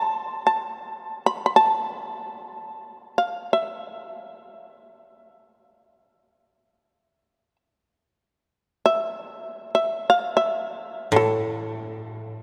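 Still and austere, this fragment of traditional Japanese chamber music unfolds in free time, tuned to A4 = 443 Hz. A powerful, buzzing, plectrum-plucked fretless shamisen carries the melody up front in a long cathedral reverb, slowing from 11.0 seconds, while a woody koto played with fingerpicks joins at 11.1 seconds with a low accompaniment for the closing moments.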